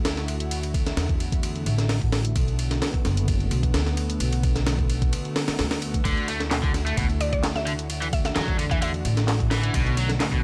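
A lush, warbling unison pad pumps beneath pizzicato upright bass and a compressed, pitched-up sampler-style breakbeat kit with a thumpy kick and high-tuned snare, while a layered house kit adds bright hats and handclaps in the background of this gritty, energetic breakbeat excerpt. At 6.1 seconds an overdriven electric guitar riff enters with 12-bit grit and dub echo. A round, mallet-like FM pluck with an AM radio tone briefly carries the melody from 7.2 seconds, before a barely audible riser at 9.7 seconds.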